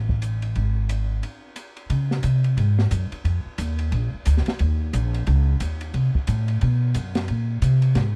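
A dry, close studio sound with a 1970s character frames this brief, sophisticated swing jazz excerpt from a longer piece. A woody, thumpy upright bass with gut strings sits up front from 0.0 seconds, plucked low and dark, while an acoustic drum kit in a small room enters at 0.1 seconds with hi-hat, ride, snare and kick, the cymbals dusky, the snare medium-tuned and the kick boomy under a rolled-off top. After a break at 1.2 seconds, the music moves into a new section that carries the swinging groove through to the end.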